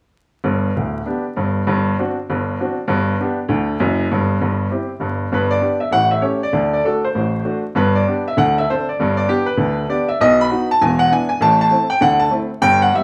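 Playful and swinging, this short cut from a longer stride jazz piece features a solo baby grand piano, sounding brilliant and up front, playing from 0.4 s to 13.0 s across a range from deep bass to high treble. The tune moves through a brief opening passage before a second section begins at 5.3 s, with busier chord changes driving the swing feel. A lively studio reverb, studio ambience and a layer of vinyl crackle give it the open, live-in-one-room character of an old record.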